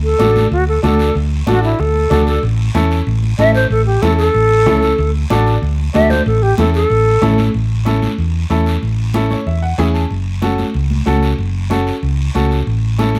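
A light reverb gives this sunny, joyful cumbia a gentle sense of space as it moves at a brisk 188 BPM in A major, cut from a longer piece. An airy alto flute with vibrato and a soft attack carries the melody up front until 7.5 seconds, over a dark, round hollow-body electric bass and a clear, woody upright piano whose worn, slightly detuned tone and audible action noise feel intimate. High-tuned, compressed congas sit in the background beside a raspy guiro, and the piano steps forward with a brief fill at 9.1 seconds as the harmony shifts toward F#m.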